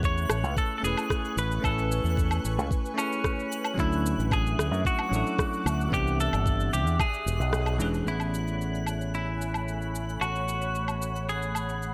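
Light reverb and a digital ambience give this sunny chillout excerpt a polished, airy sheen. It moves at a relaxed, straight 112 BPM in 4/4 in A major, drifting through lush chords from Amaj9 to Dmaj9, Cmaj9 and E13 before settling back on Amaj9 at 8.1 s, where a new section begins. Up front, a clean, picked electric guitar carries the melody with a compressed, twangy tone and delay, joined by a fingered electric bass whose envelope filter gives it a bright, direct, amped bite. A bell-like tine electric piano with delay plays the accompaniment, while an ethereal pad of detuned sawtooth and triangle voices, with slow attack, long release, ensemble chorus, phaser and its own reverb, sustains chords in the background beside a twinkling granular texture with an FM, octave-up shimmer. The groove comes from tape-tinged electronic cabasa, rim click and woodblock, plus a knocking electronic kick that plays until 7.1 s, and the band hits an accent at 7.5 s.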